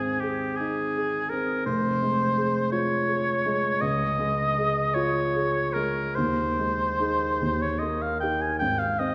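A six-eight metre, pulled freely by rubato, carries this serene, tender fragment of a romantic classical duo, heard from further back in a reverberant scoring stage. A clear, punchy oboe sits up front as the solo melody voice, its vibrato lending feeling and its top end smooth. The grand piano accompanies with a warm, open tone and long sustain across the whole 9.1 seconds.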